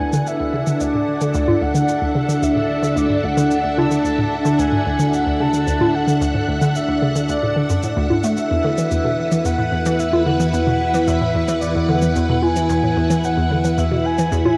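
Luminous and expansive, this short cut of sequencer-driven space music in D lydian moves at 111 BPM in a straight 4/4, shifting from D to Esus4 at 8.4 seconds. A lush, vintage string machine ensemble sits up front with sustained chords under plate reverb, while a breathy, flute-like synth lead carries the melody with tremolo, vibrato and analog delay, and a hollow, nasal square-wave pluck bounces through a riff treated with chorus and a filter sweep. A fat, saturated analog bass fades in from the background, and dry electronic cabasa and congas add percussion, all wrapped in a digital room reverb and the soft grain of a home cassette recording.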